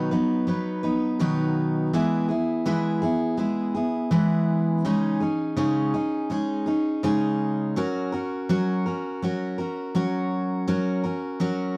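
A picked steel-string acoustic guitar plays alone and up front throughout this short pop excerpt, its full-bodied jumbo tone sitting in a dark, warm production with moderate studio ambience. The mood is heartfelt yet carefree, with a gentle swing on the sixteenths as the chords move from B to E, then C#sus2, and settle on F# at 7.8 seconds.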